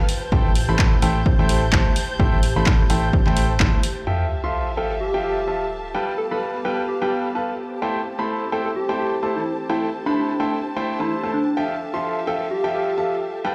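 Energetic yet bittersweet, this piano house cut, taken from a longer piece, moves on a swung 4/4 groove. A bright, brilliant grand piano carries the riff from 0.3 seconds, up front and intimate with audible action noise and long sustain, filtered and trailed by dub echo while pumping to the sidechain. Beneath it, a dark, woody string section holds lush bowed chords with vibrato, and a warbly, nostalgic tape-like pad drifts in the background with chorus. A punchy analog kick and a round, mellow FM bass drive the opening until 3.7 seconds over a layered house kit of crash, handclaps and filtered hi-hats that has been playing since 0.1 seconds. At 4.1 seconds a sub drop lands as the harmony shifts from Am7 to Fmaj9, and soon after a gentle, keys-like FM synth lead with chorus sings the melody over G9 and back to Am7, all set in a large studio reverb.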